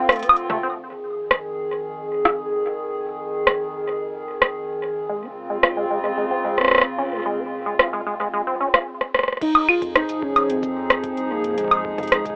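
A short break opens this glitchy, melancholic IDM excerpt at 111 BPM, with a hollow, flute-like pad holding soft sustained chords under chorus and sidechain pumping that carry through the whole clip. An overdriven analog drum machine sits up front with metallic hats, rim clicks, shaker, woodblock, toms and crash, and a rubbery, resonant acid bass plucks arpeggios, returning at 5.1 seconds as the harmony moves from Fm7 to Dbmaj7. After a stop and a drum fill, the second section begins at 9.4 seconds, where a warbling, nostalgic lead carries the melody, detuned and full-bodied, with vibrato, tremolo, chorus and analog delay. A deep overdriven kick joins in the background at the same point, and a round sine sub bass follows in the background at 9.8 seconds. Cassette tape colouring on the lead, pad and acid bass, along with a small, wet booth ambience and a lo-fi telephone quality, gives the recording a homemade, worn character.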